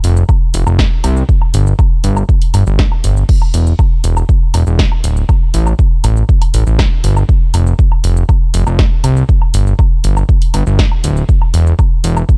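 A fat, detuned sawtooth analog bass sits up front with a filter sweep and sidechain pumping, ranging from D1 to C2 alongside a punchy, layered electronic kick that enters at 0.3 seconds and an analog drum machine of crash cymbal, hi-hat, shaker, snare and woodblock, driving this dramatic melodic techno excerpt at 120 BPM in 4/4 with little reverb.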